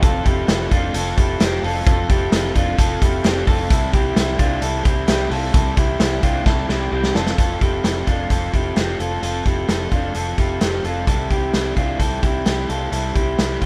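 This rough home demo mix carries a small room ambience, capturing a short stretch of a longer jangly indie pop tune in F major at 130 BPM in a straight 4/4. The mood is breezy and youthful, with the chords moving between F and C. An electric guitar through a small old amp plays bright, twangy arpeggios, slightly broken-up and lo-fi, with a slapback echo trailing each note. Beneath it, a crunchy overdriven guitar supplies picked accompaniment, while a vintage muted fingered bass stays low, round, foam-muted and dark. The raw garage drum kit is up front, its punchy kick, medium-tuned snare and hi-hat heard with a rolled-off top and the sound of a stone room. A drum fill from 6.5 to 7.4 seconds leads into the second part of the passage.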